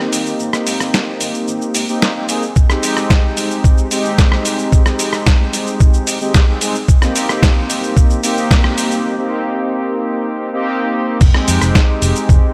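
A light reverb and a gritty, compressed sampler sheen open this sleek, groovy nu-disco piece in F minor at 111 BPM, cut from a longer track. Up front, a mellow, round synth brass holds soft-attack sustained chords with chorus, tape echo, sidechain pumping and vintage 12-bit sampler grit, moving between Abmaj7 and Fm9. A bright, envelope-filtered fingered electric bass sits in the background, and a dusty soul sampler-style kit plays crash, hi-hat, rim click, shaker and a medium-tuned snare. A thumpy electronic kick joins at 2.6 s, and the build-up reaches a break at 9.0 s before the drop lands at 11.2 s.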